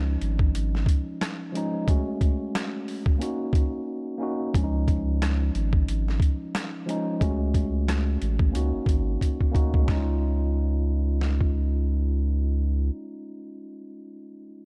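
Boom-bap hip-hop with a nostalgic feel, this short cut from a longer piece lays a mellow tine electric piano, filtered and coloured by cassette tape, over a deep, thick, saturated sub bass and a gritty, compressed, pitched-down sampler-style drum kit with a thumpy kick and medium-tuned snare, the drums and bass sitting up front in a dark, dry production, with a brief break at 3.9 seconds and a drum fill at 9.2 seconds; the drums drop out at 11.5 seconds and the bass at 12.9 seconds, after which the piano carries on alone until 14.7 seconds.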